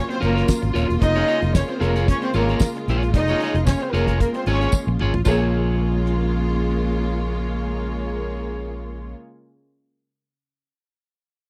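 Disco at 113 BPM in Bb minor, this glamorous, danceable cut from a longer piece has the dry, close sound of a 1970s studio with little reverb. A damped 70s drum kit sits up front with a fat snare, tight kick, hi-hat, rim click, toms and crash cymbal, and it plays a fill from 4.7 to 5.3 seconds before dropping out at 6.2 seconds. A dark, round fingered electric bass with an amped edge holds the low end, joined by a jingly tambourine from 0.5 to 5.5 seconds. An electric guitar at the edge of break-up adds picked, slightly broken-up accompaniment, while a rich, lush string section holds sustained chords beneath a reedy violin section that carries a second line with a gut-string tone, light vibrato and a slapback echo. The harmony moves from Gbmaj7 to Bbm7/F, settling on Bbm7 as the second section begins at 5.3 seconds.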